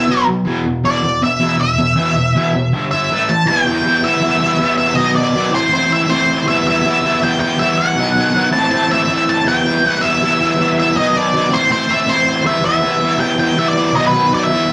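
Rock in E minor at 160 BPM in a straight 4/4, this gritty, raw excerpt is cut from a longer piece. An octave-fuzz lead guitar carries the melody from B4 to A5, its dark, distorted tone sitting up front and picked throughout. Beneath it, a crunchy overdriven guitar plays a double-tracked riff from E2 to E4, its picked electric sound colored by harmonic tremolo. Both guitars play the whole 14.7 seconds, with the opening bars built on power chords before the harmony settles at 3.5 s into a repeating cycle of Em, B and Am. The rough rehearsal-room recording carries tube saturation and a wet studio reverb, giving the pair a gritty, live-in-the-room feel.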